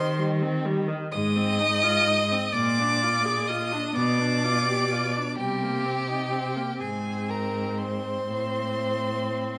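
A reverberant recital hall surrounds this short classical fragment, lifted from a longer piece: a slow, lyrical romantic movement for string quartet in 6/8, shaped with free rubato. All four bowed players sound together from 0.0 to 9.6 seconds. The first violin carries the high melody with vibrato, soft attacks, expressive portamento and a rich tone, while the second violin traces a smooth, even line beneath it. The viola's steady accompaniment sits somewhat distant, like the second violin, and the cello's focused bass stands up front. The harmony moves from C minor through F minor seventh, B-flat seventh and G seventh toward C minor seventh, A-flat and finally A minor, giving the passage a warm, lyrical glow.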